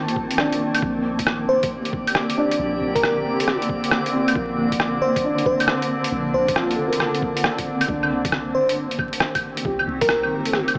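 Swung 16ths from muffled, pitched-down sampler-style claves, hi-hat and rim click over a thumpy electronic kick drive this melancholic, rainy future garage excerpt, where an up-front granular cloud pad and a felt-muted upright piano pump under sidechain beside a soft, round 808-style bass. A sparkling, bell-like FM electric piano melody and a drifting glass-harmonics texture both enter at 1.5 s, the texture dropping out at 7.9 s, all bathed in huge ambient reverb, vinyl crackle and a small-speaker sound.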